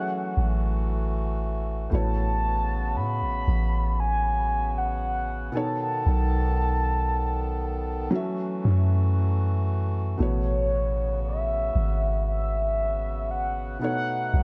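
A mellow, horn-like synth lead opens this dreamy, romantic contemporary R&B passage, carrying the melody from the first second over a felt-muted upright piano and a hand-pumped harmonium. The lead sits up front with a round, sustained tone, a soft attack and vibrato, thickened by chorus and trailed by dub echo. The piano's accompaniment sounds intimate and vintage, its thin felt softening every note, and it carries dub echo of its own, while the reedy, breathing harmonium holds sustained chords underneath. At 0.4 seconds a soft 808-style bass enters, deep, dark and up front, with a fast attack that decays into a sine-like roundness. At a slow 58 BPM in a straight 4/4, the harmony moves through F#m7, A69 and B7 across a dry, echo-heavy mix, in a section cut from a longer piece.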